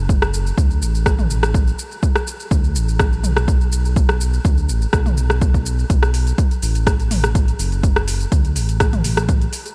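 Driving and warm, this short afro house cut from a longer piece moves in a straight 4/4 groove. A punchy, overdriven electronic kick sits up front, layered and produced, with a touch of studio ambience around it. Alongside it, a deep house drum kit adds metallic hi-hats, rim clicks, shaker and toms, its layered sound also carrying overdrive and a little room. The smooth synth bass blends sawtooth and triangle tones with ring modulation, fast attack, sustained notes and vibrato, and its mellow low end pumps with sidechain compression. The whole part set stays in one continuous section, with the bass and kick placed forward over a digital ambience.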